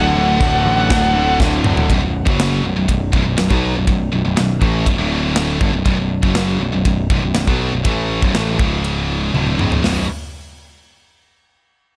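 Heavy metal, dark and relentless, opens in half time with a distorted lead guitar melody trailing tape echo over a murkier second lead line, both gone by 1.4 s, and a double-tracked cranked stack guitar riff that stops at 1.9 s, while a bright high-gain guitar and a sludgy overdriven guitar grind low riffs throughout, a growly overdriven picked bass sits up front, and a tight, polished drum kit entering at 0.4 s drives the music with china and ride cymbals and fills in an airy big-room sound.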